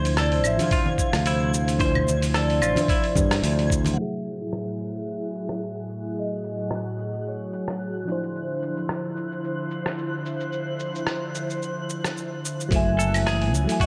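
Wistful and smooth, this sunset chillout excerpt at 110 BPM with a light sixteenth-note swing sets a ringing vibraphone melody with slow motor vibrato over a round FM electric piano, an airy breathy pad with phaser and sampler grit, twangy clean guitar arpeggios soaked in spring reverb, an up-front fingered bass, a twinkling granular shimmer, background congas, a thumpy electronic kick and a gritty, dusty soul kit of cabasa, claves, hi-hat and rim click, over harmony moving between Dm9 and F#m9 while a filter sweep runs from 4.0 to 12.7 seconds.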